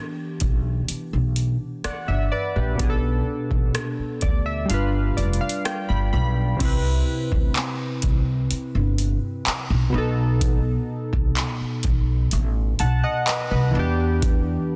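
A dry, dense and heavily limited mix puts every part up front in this sensual, longing contemporary R&B fragment, cut from a longer piece. Round analog keys with square and sawtooth tones, fast-attack decaying notes, chorus and a filter sweep voice chords such as Em7, G7, Cmaj7 and B7, with a synth keys fill from 3.7 to 6.6 s. Beneath them, a woody, growly pizzicato upright bass sits alongside a booming analog drum machine whose deep kick, metallic hats, handclaps, rim clicks and crash cymbal sound tape-warm and re-recorded in a small room.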